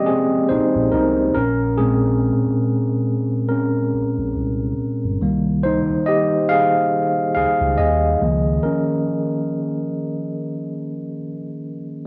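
Recorded at home on cassette with a small, wet booth ambience, this smooth, tender contemporary R&B fragment with a gentle swing centres on a clean, up-front tine electric piano heard through built-in speakers and colored by cassette tape, moving through Abmaj9, Bbm9, Cm7 and Db69, while a deep, full sine sub bass with octave enters at 0.5 seconds and stops at 8.6 seconds, leaving the piano alone until 12.1 seconds.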